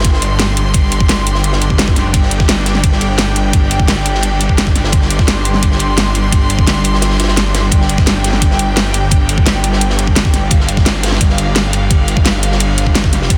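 A dark, mechanical drum and bass excerpt at 172 BPM opens with a rich, bowed string section holding sustained chords over a thick, detuned sawtooth bass, both pumping with sidechain compression, the bass saturated with chorus and sitting up front. A knocking electronic kick drives the groove alongside a layered electronic kit with a huge snare and metallic hats, while a gritty, saturated breakbeat kit with dark cymbals sits in the background, its top rolled off. The kick drops out briefly from 7.0 to 7.7 seconds, and the whole mix is dense and heavily limited in a light, small-room ambience.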